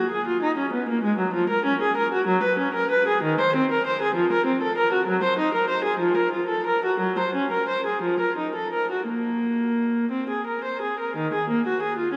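Grave and flowing, this brief excerpt from a longer baroque-style suite movement features a single viola playing alone. It moves in a rubato 6/8 at roughly 55-66 BPM counted in dotted quarters, settling into Bb minor from 3.2 s. The bowed viola sits up front in a period style, its gut-string tone reedy and warm as it ranges from Eb3 to C5. A cathedral reverb with a 5.0 s decay wraps the instrument in the resonance of a church or concert hall. Tuned to A4 = 441 Hz, the solo line carries through to 12.2 s.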